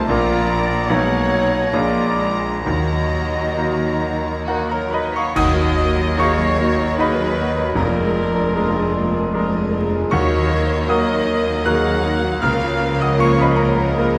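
Classical romantic movement for piano and orchestra in Eb minor, brooding and passionate, moving at a rubato 64-80 BPM in 3/4, with a bright, brilliant concert grand piano up front carrying the melody alongside an intense chamber violin section, while an airy flute, a distant oboe and a dark clarinet add second lines over a lush viola section, a dark bassoon, cellos and double basses. Mellow horns sustain chords throughout, mellow, soft-attack trumpet stabs appear only until 4.9 s, quiet hard-mallet timpani strike at the opening and again at 10.1 s, and dark cymbals with bass drum mark a full-band accent at 5.4 s. The passage, cut from a longer piece, sits in a wet scoring-stage reverb with a layer of vinyl crackle.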